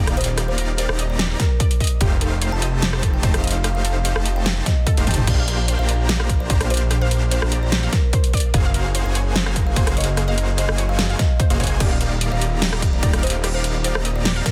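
Playful and bright, this future bass excerpt moves at 147 BPM in 4/4 with a half-time feel, centred in Bb major and drifting through lush chords from Ebmaj9 to F9, Bb69, Gbmaj9#11 and back to Ebmaj9. A woody, hollow kalimba carries the melody from the background, its ringing tones dressed in digital delay and sidechain pumping, while huge, bright supersaw chords play the riff with the same pumping. Beneath them a thick, saturated detuned saw bass with chorus sits up front, and a punchy, wave-folded unison pluck weaves delayed arpeggios in the background. The dubstep drum kit brings a massive snare, metallic hats, rim clicks, toms and crash, with a brief drum fill at 5.0 seconds, and a punchy electronic kick joins up front at 1.4 seconds. Light reverb and digital ambience surround a dense, heavily limited modern master.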